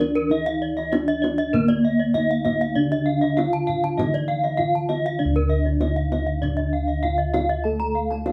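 A straight 4/4 pulse at 98 BPM drives this brilliant, hypnotic stretch of Balinese gamelan in D pelog, cut from a longer piece and running about 8.3 seconds. A bronze metallophone carries the melody between Bb3 and A4 with mellow, padded-disc-mallet strokes and a boxy small-room character. Beneath it, a second metallophone plays soft accompaniment in the D3 to Bb3 range, while bossed gongs supply a round, beating bass from D2 up to A4. Two higher metallophones play arpeggios struck with horn mallets: one is bright, airy and up front, and the other, entering at 0.2 seconds and stopping at 8.0, sounds close-miked, dry and full. The paired tuning gives the metallophones a shimmering beat, and a tight, vintage, band-limited kendang played with soft hands sits low in the mix, the ensemble heard live together in one room with moderate studio reverb.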